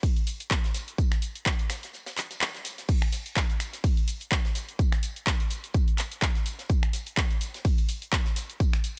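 A small-room mix carries this aggressive, swaggering house excerpt at 126 BPM with a 16th-note swing, where a punchy, up-front, overdriven electronic kick, an up-front, tape-warm electronic house kit of cabasa, crash, finger snaps, handclaps and hi-hat, and a very quiet, dry, airy funk kit of hi-hat, medium-tuned snare and tambourine play together, with a brief break from 1.9 to 2.9 seconds.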